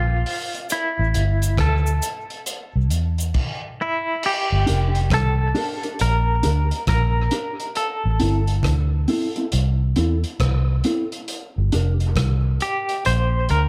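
A swung 68 BPM dub reggae groove in G dorian, deep and heavy, is anchored by a round, foam-muted vintage bass sitting up front and a gritty, saturated breakbeat kit with a tight kick and dark cymbals entering at 0.3 seconds, while a bright semi-hollow electric guitar carries the melody through tremolo and dub echo, a close, dry cabasa adds texture until 3.3 seconds, and a mellow, clean accompaniment guitar with its own dub echo joins at 4.7 seconds over a light reverb and studio ambience.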